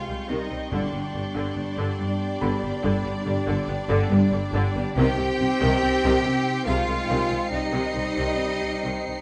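Tense and eerie, this slow cinematic excerpt in 5/4 sets a very quiet, distant violin melody and a clear, lush second violin line over dark French horn chords, ethereal glassy harmonica, a background cello riff, close chamber cellos and up-front double basses on the bass, smooth violas, a high violin texture, a muted felt piano that stops at 5.0 seconds, and hard-mallet timpani heard between 0.7 and 1.9 seconds, all in light reverb.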